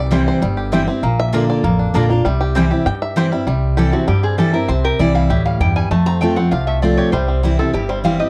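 A dry, close recording in a 1970s studio style, with little reverb, gives this joyful, lively bluegrass passage an intimate feel. At 197 BPM in a straight 4/4 in C mixolydian, a twangy, percussive five-string banjo played with fingerpicks takes the opening solo over the first 3.5 seconds, a touch of slapback echo trailing its notes. A full-bodied, up-front steel-string acoustic guitar carries the picked accompaniment, while a thumpy, woody upright bass with gut strings holds down the dark low end. A warm mandolin adds picked double-string stabs through the first half. At 3.8 seconds a lap resonator guitar joins the banjo on the melody with a metallic, nasal slide tone. The harmony moves between C, Bb and F.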